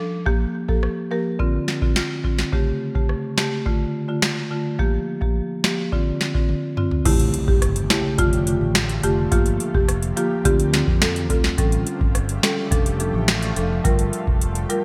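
A woody rosewood marimba opens this bouncy, tough dancehall excerpt in D minor at 106 BPM, joined almost at once by a dry, buzzing hardwood marimba melody and a booming analog drum machine with a deep kick, crisp snare, metallic hats and gated reverb, all circling a Gm7, Dm7, A7, F6 progression. After a drum fill at 6.5 seconds, a very quiet electronic impact and a round, punchy fretless bass arrive at 7.1 seconds, and a blurred granular cloud pad with subtle chorus and sidechain pumping drifts in at 7.7 seconds. The mix has a bright 1980s-style digital sheen with light reverb.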